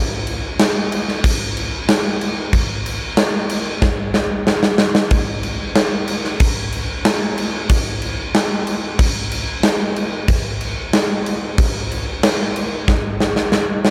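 A huge, up-front arena drum kit, with punchy kick, a medium-tuned snare and bright crash cymbals in a hall-like space, carries this dreamy, blissful rock excerpt at 93 BPM in a straight 4/4, entering at 0.3 seconds, breaking into fills at 3.8 and 12.9 seconds, all under a light reverb.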